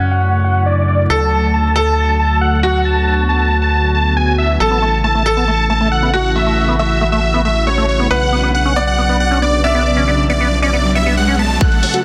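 A dense, heavily limited modern master with light reverb opens on a huge, detuned supersaw carrying the melody up front, its filter sweeping across the first 11.6 seconds while sidechain pumping and dub echo wash through it. This is a soaring, euphoric stretch of uplifting trance in straight 4/4, cut from a longer piece and moving through F#m, D, A and Bmadd9. A bright, brilliant concert grand piano plays a second line beneath, with a worn edge and deep bass, while a gritty, saturated synth bass built from square and sawtooth waves with oscillator sync drives the low end. At 4.7 seconds a squelchy, resonant acid bass joins with chorused arpeggios, and a riser builds in the background from 10.3 seconds. At 11.6 seconds a punchy, overdriven kick, a dry analog-sounding hi-hat and a round, detuned pluck arrive together as the section turns over.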